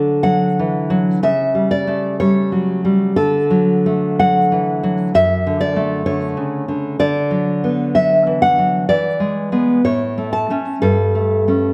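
A lone fingerpicked nylon-string guitar opens this tender, romantic classical excerpt, its dark, full-bodied tone and fresh strings sitting up front with audible finger squeak. The playing moves in an unhurried, rubato two-beat pulse, ranging from low bass notes to high treble, and the harmony shifts toward a new center at 7.0 seconds. A wet recital-hall reverb surrounds the guitar, lending the intimate performance a spacious, glowing air.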